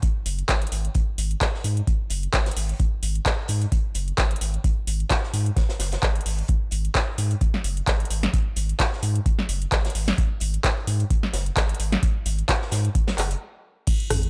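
Acid house excerpt with a driving, hypnotic swing, built on a deep, tape-warm electronic kick and an analog drum machine whose punchy snare, metallic hats, claps, rim clicks, toms and crash sit up front, a faint acoustic jazz kit adding hi-hat and snare far beneath, and a round, dark analog bass entering at 0.3 seconds with a filter sweep and sidechain pumping, all breaking for a stop at 13.4 seconds.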